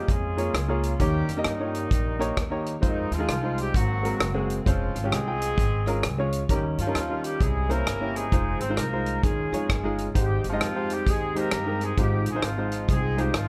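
Reverent and soulful, this uptempo gospel excerpt swings at 131 BPM in Ab major, with a distant horn section carrying the melody in octaves with light vibrato over a clear, intimate grand piano whose action noise can be heard. An up-front country drum kit with a punchy kick, hi-hat and rim clicks drives the groove beside a woody, dark pizzicato upright bass. At 10.2 seconds a very quiet French horn section adds tight, smooth-topped sustained chords as the progression settles on Abmaj7, all within a dark, small-room production.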